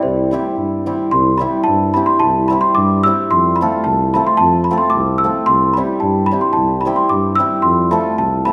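A worn celesta, a cimbalom and a dark tuba all begin at once in this short cut from a longer Balkan wedding band piece, setting a virtuosic, exuberant mood at 111 BPM in a straight 2/4. The celesta carries the melody high above, its bell-like, sweet tone from soft felt hammers sounding mellow and slightly out of tune while sitting up front. Beneath it, the cimbalom's hammered accompaniment in the middle register rings with a shimmering, acoustic quality. The tuba anchors the bass with a punchy, classical-style line, placed forward in the mix. In C major and tuned to A4 = 439 Hz, the harmony moves between C and F, shifting to F at 3.3 seconds, with a new section arriving at 1.1 seconds and running to the close at 8.5 seconds. A wet recital hall reverb with a 1.8-second decay surrounds the group.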